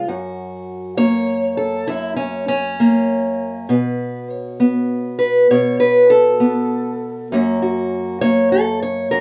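Rolling along in a 12/8 metre at a relaxed 66 beats per minute, counted in dotted quarters with a straight feel, this short fragment of a longer acoustic country blues piece carries a swaggering, laid-back mood. A lone fingerpicked steel-string acoustic guitar plays throughout, spanning F#2 to C#5 in F# major, tuned slightly below standard pitch with A4 at 437 Hz. Its parlour-style tone is dark and boxy, and it sits up front in the mix. The harmony rests on F# at the start, the chords drop out at 3.7 seconds, and F# returns at 7.3 seconds. Light reverb and a rough home-demo sound give the recording a casual, close-quarters character.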